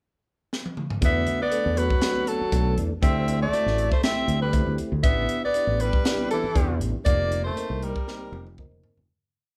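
A crisp fusion drum kit with a high-tuned snare and punchy kick sets up a halftime groove at 119 BPM with a light sixteenth-note swing, and from around 1.0 seconds a growly fingered electric bass riff, soft flute-like tonewheel organ stabs through a slow rotary speaker, and a close-miked soprano saxophone melody shadowed by a breathy tenor saxophone harmony line mostly in thirds drive this intense electric jazz fusion piece in E minor through suspended ninth chords before it fades out from 7.1 seconds.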